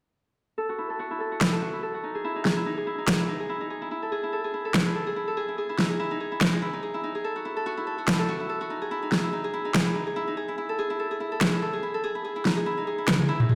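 A fingerpicked Celtic harp opens this lush, emotional future bass excerpt at 0.6 s, its ringing arpeggios softened by a low-pass filter and trailed by delay as they sit up front. At 1.4 s a big-room dance drum kit arrives, an electronic, layered and produced set of finger snaps, toms and a huge, overdriven snare that shares the foreground with the harp. The groove moves in a swung, half-time feel, giving the pulse a loping weight beneath the delicate strings. The harmony cycles twice through F#m7, Emaj7, A5 and D#sus4, lending the passage a yearning, unresolved color. A drum fill from 13.1 s carries the kit toward the cut. The excerpt sounds as if played on a big sound system in a bare room, bathed in a large studio reverb.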